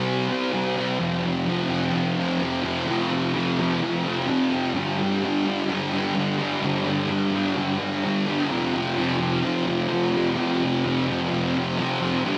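This rock excerpt has a dreamy, hazy mood, carried by a single thick fuzz guitar playing alone across its full 12.4 seconds. The electric guitar is picked and double-tracked, sitting up front with a distorted, furry tone shaped by lush chorus and delay. Its range spans from F2 up to C4, giving the part a heavy low end and a gritty middle register. The power-chord movement runs from C5 to F5, then to G5 at 4.8 seconds and back to F5 at 8.5 seconds, over a straight 4/4 feel. The whole mix is soaked in a long hall reverb that blurs the edges of each chord into a cloudy wash.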